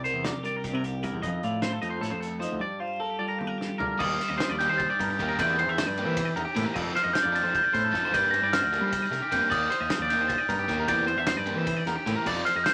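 This math rock and midwest emo piece, cut from a longer work, moves in a restless 7/8 at 305 BPM counted in eighths, with a wistful mood over chords that cycle through C7, F7, Gm7 and Ebmaj7 before shifting to C9/E and F9. A compressed, up-front twelve-string electric guitar plays bright, clean accompaniment and drops out at 5.4 seconds, while a twangy electric guitar spins high arpeggios throughout. A growling picked bass with overdrive anchors the low end, and a loose indie drum kit with a fat snare, punchy kick, dark cymbals and a pumping room sound drives the groove, capped by a fill that leads into the second section. A soft, bell-like glockenspiel struck with rubber mallets enters at 3.8 seconds to carry the melody and sits prominently in the mix, and a crunchy, double-tracked overdriven guitar riff joins at 4.0 seconds. The whole track sits in a moderate small-room reverb, with a vinyl crackle layered over it.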